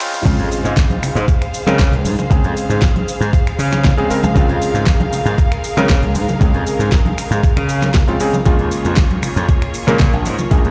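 A thumpy, overdriven electronic kick with a re-recorded big-room feel arrives up front at 0.3 s together with a gritty, punchy slap bass as a riser gives way to a background impact in this groovy, sunny nu-disco excerpt. A clangy vintage electric grand piano with short sustain and dub echo pumps alongside intense, vibrato-rich bowed studio strings holding sustained chords, moving from Dbmaj7 to Bbm7 at 8.5 s. A layered pop kit with a fat snare, crisp hats, finger snaps, shaker and crash drives the beat, while band-limited acoustic congas and a tube shaker sit in the background.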